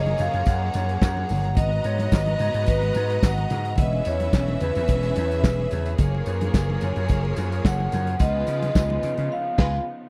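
This glamorous, danceable disco cut in F# major opens at 0.0 s with the vibraphone carrying the melody, its metallic, ringing tone struck with medium hard mallets and trailed by tape echo. Alongside, a lush violin section plays a smooth second line with vibrato, while a clear, focused string section holds sustained chords in the background. A punchy, amped vintage slap bass sits up front, and a dark, tight soul drum kit with handclaps, hi-hat and crash cymbal drives a straight 4/4 groove at 108 BPM. Very quiet, bright congas and a jingly tambourine add percussion, and the harmony moves through F#maj9, G#m9, E6 and back to F#maj9 before landing on C#9. The dry, close 1970s-style studio sound ends on a band accent at 9.3 s, as if cut from a longer piece.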